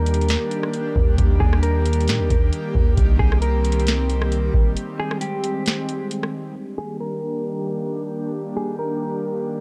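A mellow, clean electric guitar melody, an airy, breathy pad and a long, sustained 808-style bass open this blissful, floating piece of atmospheric cloud-rap in Eb major. It moves at 134 BPM in a half-time 4/4 feel. The guitar sits dark and compressed behind a low-pass filter and digital delay, while the soft, full-bodied pad holds slow-attack chords through chorus, sidechain pumping and its own low-pass filter, with a detuned, ring-modulated shimmer and a noise layer. A booming analog drum machine comes in at 0.1 seconds with a deep kick, crisp snare, rim click and metallic hats, dry and up front, joining the deep, sine-like bass whose long notes decay after a fast attack. The bass drops out at 4.8 seconds as a break begins, after the harmony has moved from Ebmaj7 through Cm7 to Abmaj7. The drums stop at 6.3 seconds, leaving guitar and pad to carry the closing section back to Ebmaj7 in a dark, warm mix with little reverb.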